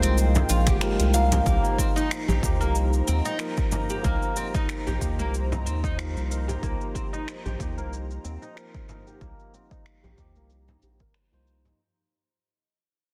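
This organic downtempo excerpt has an earthy, hypnotic mood and a lightly swung groove. A warm, classical-style clarinet is heard in the background only briefly, over a clean, bright tine electric piano, a smooth, detuned sawtooth pad with chorus, and a woody, plectrum-plucked fretless oud playing arpeggios on doubled strings. The round, dark analog bass sits up front with a fast-attack filter pluck. It pumps against the beat along with the piano and pad, while tape echo colours the clarinet, piano and oud. An acoustic frame drum played with soft hands enters at 0.4 seconds, and a punchy, overdriven electronic kick follows at 0.7 seconds, joining a layered deep house kit of cabasa, finger snaps and metallic hi-hats. From 1.5 seconds the harmony moves from Fmadd9 to Cm7, a filter sweep runs over the oud, and the dense, heavily limited mix fades out in a light reverb.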